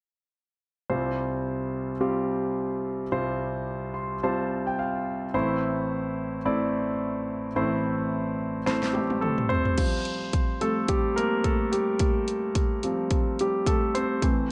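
A concert grand piano opens the music at 0.9 seconds, playing an accompaniment on a Csus4 chord with a warm, intimate tone, deep bass, long sustain and audible action noise. This is piano-driven pop in C major at 108 BPM in 4/4, with a light swing on the sixteenths and a hopeful, anthemic mood. Early on the piano plays a short fill before the harmony moves to A minor. A pop drum kit arrives at 8.7 seconds with a fill, its layered, electronic sound built on a punchy kick, a fat snare, warm hi-hats, toms and crash cymbal, placed up front alongside the piano. At 9.8 seconds the chord returns to Csus4 and the piano takes a polished solo over the drums, all within a moderate large-studio reverb, until this section, cut from a longer piece, ends.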